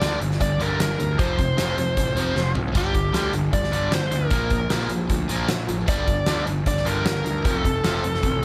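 A bluesy lead guitar, distorted with analog delay and mixed up front, carries a driving, aggressive hard rock melody from the start of this short cut, over a huge arena drum kit with a fat snare and punchy kick in a big room. Behind them, two bright picked rhythm guitars play the riff, one a cranked stack with overdrive and phaser, the other tight and distorted, while a warm, fuzzy, overdriven picked electric bass holds the low end. A drum fill at 2.4 seconds pushes the Gm, F5, G5 and Bb5 progression forward, all under light reverb.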